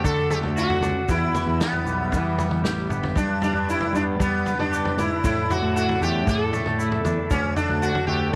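Psychedelic rock with a mysterious, trippy mood, this short section cut from a longer piece moves in a steady, straight four. A buzzing, up-front sitar carries the melody, its plucked notes shimmering with sympathetic strings and trailing a tape echo. Beneath it, a clean, twangy electric guitar plays a scooped riff through a phaser, while a round, fuzz-drenched fingered bass adds overdriven weight. A vintage acoustic kit with a punchy kick, medium-tuned snare and toms keeps time with a rolled-off top and breaks into a fill at 2.6 seconds. A very quiet, flute-like tonewheel organ holds soft sustained chords through a slow rotary speaker, and a grainy egg shaker sits in the background. The harmony moves from D through E minor and G to A suspended, returning to D, all within a small room with light reverb.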